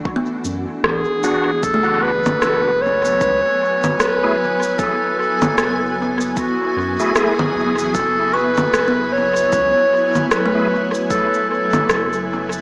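A deep kick drum and overdriven electronic shaker, rim click and congas set a swung 76 BPM groove in 4/4 for this meditative ambient dub excerpt in F# minor, drifting from Bm/F# to F#m7 at 1.6 seconds over a round, soft sub bass. A clear, smooth-topped clarinet carries the melody up front with dub echo, while a cloudy granular pad holds sustained chords, a woody kalimba plucks echoing arpeggios in the background, and a reedy tonewheel organ adds very quiet stabs through a fast rotary speaker. A huge ambient reverb and a small-speaker sound give the mix a hazy, distant cast.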